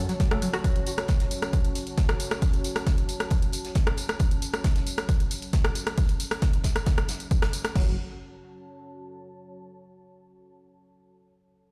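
An overdriven analog drum machine drives this intense, dark peak-time techno excerpt at 135 BPM in F# minor, its punchy kick and crash cymbal sitting up front, while a second overdriven analog machine adds hi-hat, rim click and tambourine. Further back, a polished acoustic studio kit in a small, airy room supplies hi-hat and a medium-tuned snare, with pumping on the hats. A deep, moody pad drone built from detuned sawtooth and sine layers with a sub octave, chorus and its own reverb pumps under the beat and fades out by 7.8 seconds, while a second, higher pad of the same kind carries on as a background texture until 9.5 seconds. A tight, driving sequenced synth riff of detuned saw and square waves with a filter pluck, chorus, phaser and dub echo appears only briefly at the start and again around 7.8 seconds, alongside short touches of a rumbling, beating, detuned saw bass that stays saturated and low in the mix. 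The whole track sounds as if played on a big sound system in a bare stone room, giving it a cavernous, reverberant edge.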